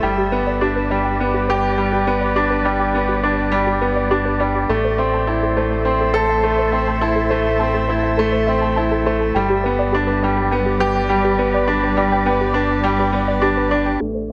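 Set in a small, filtered room with a moderate echo-chamber reverb, this melancholic, hypnotic piano and strings electronica fragment moves at 103 BPM in a straight 4/4 over a G to Am and back to G progression. A brilliant, up-front baby grand piano carries the riff with delay, while a muted string quartet holds veiled, distant bowed chords with vibrato. Beneath them, a round, deep analog bass with tube saturation anchors the low end, and in the background a soft, gentle pluck plays arpeggios with chorus, delay and a filter sweep running through the whole passage.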